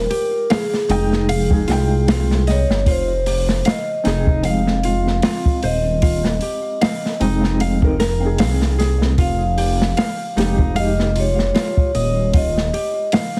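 A ringing vibraphone melody opens this hypnotic, dark trip hop excerpt over a soft, felt-muted upright piano with tremolo and a deep, rumbling detuned saw bass, joined at 0.1 s by fingerpicked nylon-string guitar arpeggios and an up-front open jazz drum kit with a boomy kick and a lightly swung feel, while tape echo trails the vibraphone, piano and guitar in a dry, heavily compressed radio sound until the bass drops out at 12.7 s.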